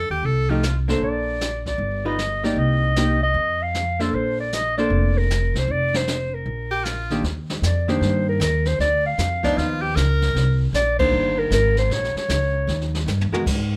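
Relaxed and sophisticated, this small-group swing and bop excerpt sets a breathy, subtone clarinet with light vibrato on the melody over clean, picked hollow-body archtop guitar accompaniment, a woody pizzicato upright bass and a brushed kit with dark cymbals and a boomy kick, while an edgy, forceful tenor saxophone with scooped notes adds a second line from 6.7 to 10.7 seconds before a band accent at 10.9 seconds and a drum fill at 13.1 seconds, all in light reverb.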